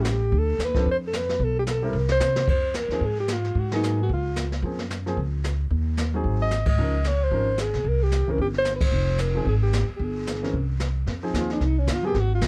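Small-group swing jazz with a smoky, swinging mood, this short cut from a longer piece features a breathy, mellow alto saxophone carrying the melody up front with light vibrato, subtone and scooped notes under plate reverb, backed by an intimate concert grand with audible action noise and a woody, thumpy pizzicato upright bass on gut strings. A small-room brush kit with dark cymbals and a boomy kick plays a fill from 1.9 to 2.5 seconds, and the band hits accents at 6.6 and 8.8 seconds before the saxophone breaks into a solo at 11.1 seconds. The production is dark and warm with light reverb.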